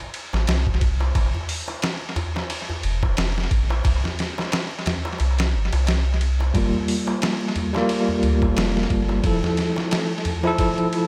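A distant, clay-shelled darbuka and a gritty, pitched-down sampler drum kit with a thumpy kick open this hypnotic, melancholic trip hop excerpt at 89 BPM in G dorian, both carrying tape echo, with a round, deep dub sub bass with tube saturation joining almost at once. At 6.5 seconds a bell-like, bright tine electric piano with tremolo enters over a Gm7 chord, and a very quiet, breathy wind-like noise texture drifts in at 7.7 seconds. The echo-heavy digital ambience gives the swung groove a spacious, moody air.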